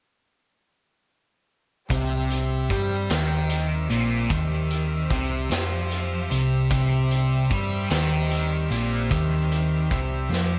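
A slow 6/8 pulse at 50 BPM, counted in dotted quarters with a straight feel, drives this trippy, kaleidoscopic psychedelic rock excerpt cut from a longer piece. All five parts enter together at 1.9 seconds over a C chord. Up front, a thick fuzz guitar riffs in a dark, double-tracked, distorted voice colored by phaser, while a hollow-body short-scale electric bass adds a round, amped low end beneath it. A vintage acoustic drum kit plays hi-hat, kick and snare with a tight kick, a medium-tuned snare and a rolled-off top, and a distant, grainy egg shaker sits in the background. A chamber string section holds sustained, bowed chords, bright and earthy and close. A drum fill arrives at 10.3 seconds before the kit stops at 10.5 and the other parts end at 10.6, all inside light, small room reverb.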